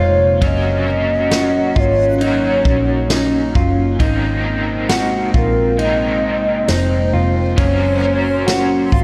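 A slow, straight 4/4 pulse at 67 BPM comes from an up-front vintage drum kit, with punchy kick, dark cymbals, snare and tambourine entering at 0.4 seconds over a round, foam-muted picked bass, in this hazy, haunting dream pop excerpt that moves from Gb to Abadd9 and back. A hollow, woody clarinet-like synth lead carries the melody with vibrato and diffuse delay, while a crunchy, double-tracked overdriven guitar with tremolo, a warbly, nostalgic tape-like pad and a mellow fingered electric guitar playing chorus-drenched arpeggios fill the middle. A reversed, granular swelling texture glints in the background from 0.6 to 7.7 seconds, and the dreamy mix is soaked in plate reverb and small room ambience.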